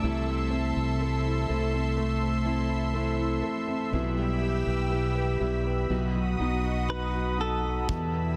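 Pop ballad in a melancholic, longing mood, where a concert grand piano with deep bass, a lush detuned pad with chorus, a full-bodied fingerpicked steel-string acoustic guitar tucked in the background and a round, dark fretless bass up front carry the chords in a concert hall reverb, before a clean, compressed electric guitar melody enters at 6.9 seconds and a polished studio drum kit adds brief hi-hat and a tight kick at 7.9 seconds.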